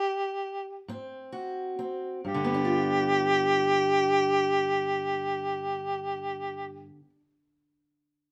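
A moderate studio reverb surrounds this brief, laid-back acoustic country blues fragment in a slow 12/8 at 42 BPM in G mixolydian: an up-front, gritty, overdriven harmonica carries a jazz-inflected melody with vibrato, scooped notes and tongue slaps, sounding alone for the first 0.9 s as the tempo slows, before a dark, boxy fingerpicked parlour steel-string guitar joins underneath on chords moving from Ab7 to G7.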